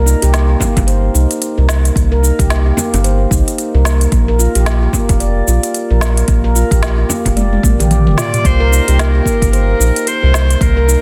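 A swung 16th-note groove at 111 BPM in 4/4 drives this earthy, mystical slice of organic downtempo in C minor, cut from a longer piece. A deep, tape-tinged electronic kick and an overdriven organic electronic kit, with woody snare, crisp hats, shaker and toms heard in a large room, carry the beat, while a close, dry frame drum sits in the background until 7.3 seconds, just before a drum fill leads into the next section. Underneath, a round sine sub bass sits up front with a fast attack and sustained, pumping tone, and a ringing stainless-steel handpan plays meditative arpeggios with soft fingertips, roughened by vintage 12-bit sampler grit and trailed by delay. At 8.2 seconds an intimate, bowed kamancheh enters with an airy bow, light vibrato, portamento and a smooth top, its melody touched with delay. The harmony moves from Cm7 to Bb5 and back, and the mix has light reverb and a dense, heavily limited modern master.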